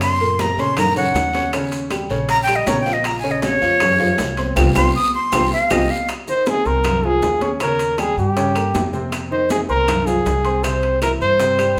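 Salsa excerpt in F minor at 158 BPM with a fiery, passionate feel, where a breathy, bright jazz flute with vibrato leads up front until 6.1 s, then a brilliant, punchy trombone takes the solo from 6.3 s, over a clear, worn concert grand piano, woody pizzicato upright bass, and a background of ringing congas, tight bongos, metal-shell timbales, claves, grainy maracas and a raspy guiro that drops out at 5.8 s, all in a live room with a large studio reverb and a band accent and drum fill closing the flute's turn.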